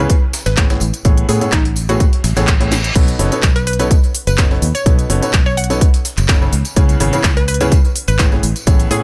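A punchy, up-front electronic kick drives this uplifting, joyful piano house piece, cut from a longer track and set in a lightly swung 4/4. Around it, a layered house kit adds a cracking snare, crisp hats, handclaps, shaker and crash, while a very quiet, gritty sampler-style breakbeat kit with a high-tuned snare and a compressed, saturated tambourine sit in the background. A clear, woody upright piano carries the riff with intimate action noise, pumping against the kick through a low-pass filter and tape echo. Beneath it, a dark, round fingered electric bass pumps in the same way. Above, a hollow, bouncy square-wave pluck with a detuned noise layer and chorus plays the melody with fast, decaying notes and tape echo. A reverse cymbal rises from 2.3 seconds into a drum fill, and at 3.0 seconds the drop arrives, moving through B9, C#m7 and Amaj9 chords in a dry, close-sounding mix.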